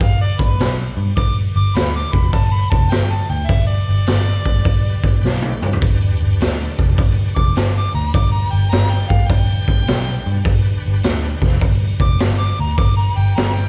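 A clear, close-miked harmonica with light vibrato and scooped notes carries a driving, gritty solo through overdrive, slapback echo and tape echo in G mixolydian in this 13.7-second cut from a longer blues rock and southern rock power-trio piece at 103 BPM with a swung feel, backed by a dark, round, foam-muted picked electric bass, a saturated raw garage drum kit with a boomy kick and a fill at 5.2 seconds, and a bright tonewheel organ holding shouting chords in the background through a slow rotary speaker and chorus vibrato, the band heard live through a club PA.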